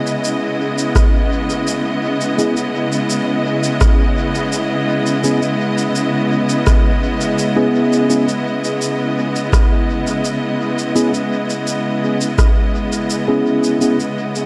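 Ambient dub at 84 BPM in 4/4 with a straight feel, this short excerpt sits in C# minor on a single C#m7 chord and feels deep and spacious. A clear, lush string section holds sustained bowed chords from the start, its focused ensemble tone carrying vibrato. An electronic shaker and rim click enter at 0.1 seconds, treated with dub echo, and an overdriven analog kick drum arrives at 1.0 seconds, deep and up front with a small-room character, playing until 12.5 seconds. A mellow tine electric piano adds stabs from 2.4 seconds, its clean tone heard through built-in speakers and trailed by dub echo. A moderate echo-chamber reverb with a digital ambience gives the mix its sense of space.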